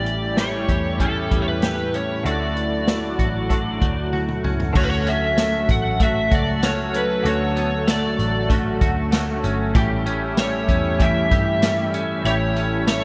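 Dream pop with a blissful, floating mood, this excerpt sets an overdriven slide guitar up front carrying the melody over a smooth, warbling analog pad of sustained chords, a twangy clean electric guitar picking chorus-and-delay arpeggios, and a bright, compressed direct-recorded guitar with tremolo sitting in the background. A dark, round, foam-muted picked bass anchors the low end, while a punchy vintage drum kit with gated reverb, tambourine and a rolled-off top enters at 0.1 seconds and plays a fill from 4.1 to 4.8 seconds. The harmony moves from A7 to Dmaj7 and back, all framed by a lush hall reverb and bright 1980s-style digital production.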